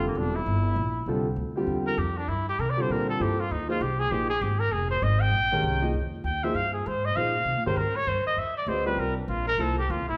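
Set in a reverberant recital hall with a long 1.6-second decay, this brief cut from a longer modal jazz piece swings briskly at 197 BPM in 4/4, tuned slightly flat to A4 = 435 Hz, with a hypnotic, spiritual mood. A vintage-toned trumpet solos up front from the start, its light vibrato and scooped notes ranging from Bb3 to G5, while a woody, thumpy pizzicato upright bass sits close beneath it. A natural, warm grand piano comps over the suspended C9sus4 and Bb9sus4 harmonies until 9.8 s.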